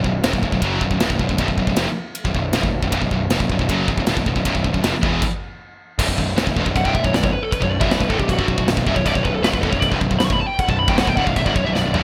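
Heavy metal in B minor at 156 BPM, heavy and aggressive, this clip opens on a B5 with two picked high-gain guitars, one of them scooped, riffing in the background over a growly, fuzzed electric bass and a punchy, up-front rock kit with bright cymbals, a medium-tuned snare and gated reverb. After a stop at 5.2 seconds, a dark, distorted lead guitar enters up front at 6.8 seconds for a solo, and a drum fill lands at 11.8 seconds. The bright 1980s-style digital production sits in a moderate plate reverb.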